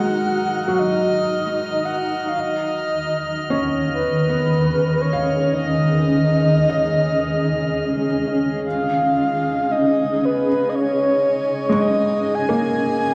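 Ambient music in 3/4 at a slow 57 BPM, reflective and spacious, heard as a short section cut from a longer piece. A breathy, flute-like synth lead carries the melody up front, its soft attack, vibrato and subtle chorus trailed by tape echo. Beneath it a granular cloud pad holds sustained chords, blurred and detuned, with a filter sweep running through its first 8.7 seconds. A felt-muted upright piano plays intimate arpeggios with audible action noise and its own tape echo, while a glassy texture of drifting overtones sits quietly in the background and fades in from 8.7 seconds. The harmony moves from Ebm to Db9/Eb and settles on Dbadd9, all bathed in a scoring stage reverb with a dark, warm production.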